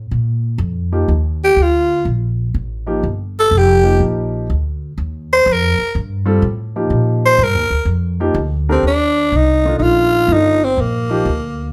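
A growling tenor saxophone carries the melody, its tone raspy and gritty with a light vibrato and a clear edge, set up front and bathed in plate reverb as it enters at 1.4 seconds. This short cut from a longer modal jazz piece moves at 124 BPM in 4/4 with a swung eighth-note feel, settled in Eb lydian over an Ebmaj9 chord, and the mood is searching and hypnotic. The upright bass opens the recording alone, plucked pizzicato on steel strings with a woody, warm tone that sits close to the listener. A baby grand piano supplies accompaniment in a polished, present voice with short sustain. The saxophone's solo stretches through the first 8.8 seconds before the music shifts into a new section, and the whole ensemble is heard from further back in a studio room with moderate reverb.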